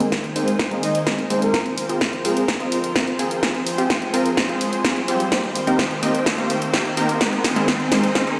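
Heard through a big sound system in a bare stone room drenched in hall reverb, this euphoric, anthemic festival progressive house build-up sets a thick, detuned sawtooth pad pumping under a punchy supersaw stab riff carrying a filter sweep and tape echo, while a big-room kit's up-front snare and hi-hat play a drum fill over a background electronic kick, a breathy flute-like lead with chorus and vibrato sings from 0.8 to 2.4 s, and a riser enters at 1.6 s.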